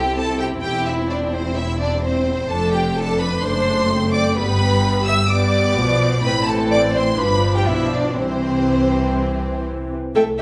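Set in a wet recital-hall reverb, this lively, cheerful excerpt of a quick classical-period movement for string orchestra in C major moves at 128 BPM in 4/4 with a rubato feel, as a rich, smooth violin section carries the melody with vibrato until 9.7 seconds over an intimate, soft-edged second violin line, dark sul tasto violas in accompaniment, background cellos and a close, lush double bass section, all bowed through a progression that passes from C through D7/F# and G7 before settling back on C.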